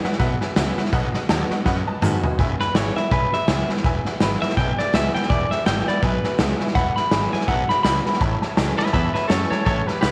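Set in light reverb, this upbeat, rollicking rockabilly excerpt, cut from a longer piece, swings at 165 BPM in E major, driven by a gritty, up-front garage drum kit with a punchy kick and an overdriven fuzz bass. A detuned, jangly honky-tonk upright piano and a boxy parlour-style steel-string acoustic guitar sit in the background, with a piano fill and a drum fill leading into the next section. From 2.6 s, a twangy, compressed clean electric guitar solo takes the lead, coloured by spring reverb and tape echo.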